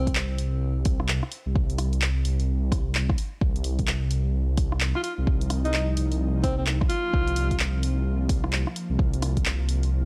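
A swung 4/4 future garage groove rides on a deep, layered electronic kick and a deep house kit of handclaps, rim clicks and dark hi-hats, both in studio reverb, while a detuned sawtooth bass rumbles up front with tube saturation and sidechain pumping. At 4.9 seconds a mellow, ethereal pad settles into the background with ensemble chorus, its own reverb and pumping, and at 5.0 seconds a bright alto saxophone plays a pop-style solo with vibrato through analog delay. The mood is nocturnal and rainy, and the dry, gritty cassette-tape sound marks this fragment cut from a longer piece.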